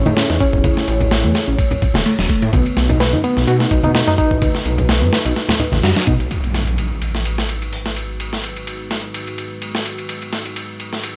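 An overdriven, sampler-style drum kit with a thumpy kick sits up front in this funky, energetic breakbeat fragment, alongside a thick, detuned saw bass, background congas and a reedy, worn electric piano riff with fast tremolo and tape echo that plays for the first 6.1 seconds, while a deep, moody analog pad pumps beneath under chorus and phaser and an electronic impact lands at 6.3 seconds, all in a dry, cassette-toned recording.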